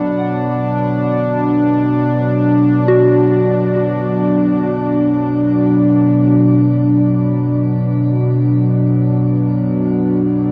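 A dark, smooth analog pad sits up front in this melancholic yet serene ambient passage in free time and B minor, holding chorused sustained chords from Bm9 to Bm while a soft, pure FM synth bell traces gentle arpeggios in the background until 6.4 s, both bathed in shimmer reverb and a vast, echoing space with a cassette-tape character, in a fragment cut from a longer piece.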